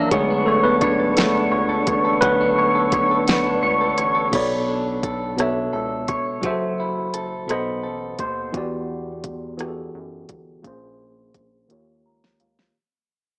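A dry, gritty hardware recording with a small-speaker sound and light reverb carries this yearning, sultry fragment of slow six-eight R&B at 57 BPM. A worn, slightly out-of-tune tine electric piano, overdriven and low-pass filtered, solos up front through the opening 4.3 s. Beneath it, a clear, key-clicking tonewheel organ on slow rotary speaker holds sustained chords until 4.3 s, and a twangy, spring-reverbed clean electric guitar adds a second line until 9.1 s. A rubbery, hollow square bass sits dark in the background, while an up-front smooth R&B kit with soft kick and fat snare plays a fill alongside a piano fill at 11.7 s. The music moves through chords such as Bm9, Em9 and D#9 as it fades out under a filter sweep on the piano.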